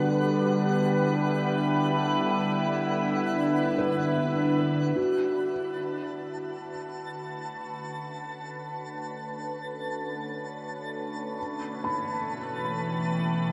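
This ambient excerpt opens in free time in B minor, tuned to A4 = 444 Hz, with an evolving wavetable pad holding sustained chords up front. Its detuned, warbling sine tone morphs under a phaser and its own reverb. Alongside it, a felt-muted upright piano plays soft, mellow arpeggios in the background, its thick felt and audible action noise giving an intimate quality, with a delay trailing each note. A string-like, nasal drone with vibrato sits barely audible until 5.1 seconds, while a twinkling granular texture adds sparkling, octave-up shimmer high above throughout. The harmony drifts from Em7 to Bm9 at 5.0 seconds, where the pad begins a long fade-in, and settles on A9/B at 11.4 seconds. A dark production and a drenched shimmer reverb make the whole piece feel serene and melancholic, as if cut from a longer work.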